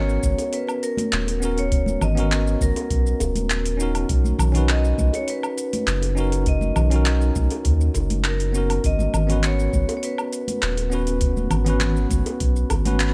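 A straight 4/4 pulse at 101 BPM anchors this blissful sunset chillout excerpt, driven by a deep, tape-warm electronic kick sitting in the background of a large room, alongside a layered deep house kit of metallic hi-hats, handclaps, shaker and woodblock, with congas and bongos tucked behind in a small-room acoustic sound. Up front, a round analog bass with a fast attack and sustained, dark tone holds the low end between D#1 and D#2. A bell-like tine electric piano plays clean, direct accompaniment through a low-pass filter and delay, outlining the harmony as it moves from G#m11 to Bmaj7 at 4.1 seconds and back to G#m11 at 8.8 seconds. Over this, a close-miked vibraphone struck with medium hard mallets, motor off, carries the melody between A#4 and D#5, its dry, ringing, full tone trailed by tape echo. Digital ambience surrounds the mix, and every part sounds from the opening moments to the cut at about 13 seconds.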